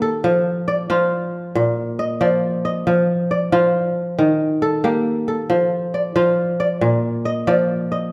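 Swaying in a straight 12/8 lilt, this joyful, hypnotic West African traditional excerpt features a solo fingerpicked kora, crisp and ringing up front, cycling through a repeating chord progression within the moderate reverb of a church or concert hall.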